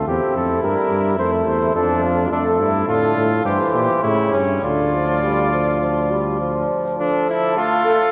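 Heard through worn, warbling cassette tape with pitch drift and a dull top end, all bathed in a long, wet cathedral reverb, this serious, solemn classical canzona for brass moves at 104 BPM in D minor: a dark, smooth-topped trumpet carries the melody while a warm flugelhorn with vibrato sings the second line, a clear, distant trombone with light vibrato supplies accompaniment, and a bass trombone anchors the bottom until it drops out at 6.7 seconds.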